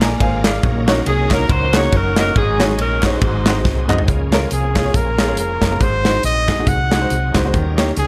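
A swinging, jubilant uptempo gospel groove rides on an up-front acoustic drum kit, crisp background handclaps and a round, punchy hollow-body bass, while a woody upright piano with audible action noise opens on a fill and a bright tonewheel organ holds chords through slow rotary speaker and chorus vibrato, as a tight saxophone section carries the melody from 1.1 to 3.9 seconds before a forceful, close-miked jazz trumpet takes over at 4.5 seconds, all in light studio reverb.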